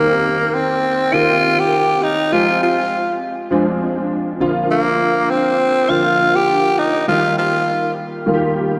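Urgent and dramatic, this brief pop fragment, cut from a longer piece, moves at 101 BPM in 4/4 with a light 16th-note swing, set in F dorian. A growling tenor saxophone carries the solo melody up front, its raspy, gritty tone and vibrato balanced by a smooth top, with delay trailing its phrases until it stops at 7.9 seconds. Beneath it, a dark, mellow grand piano with a vintage character supplies the accompaniment, treated with an ensemble chorus and sounding through to 8.8 seconds. The harmony moves from Cm7 to Fmadd9, then Bb and Eb. A lush hall reverb soaks the whole mix, giving it a dreamy, drenched atmosphere.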